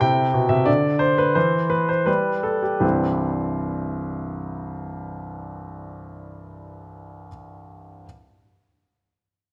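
Playful and graceful, this short passage from a longer classical-period piano sonatina in C major moves in a straight 2/4 at roughly 78-91 BPM, easing its pace through the opening phrase. A brilliant grand piano plays alone from C2 up to G5, sitting up front with an intimate closeness, long sustain and audible action noise, all set in a moderate recital hall reverb. After the opening C major chord gives way to a stretch of unharmonized line, a new section begins at 2.8 seconds back on C, and the piano carries on until 8.1 seconds.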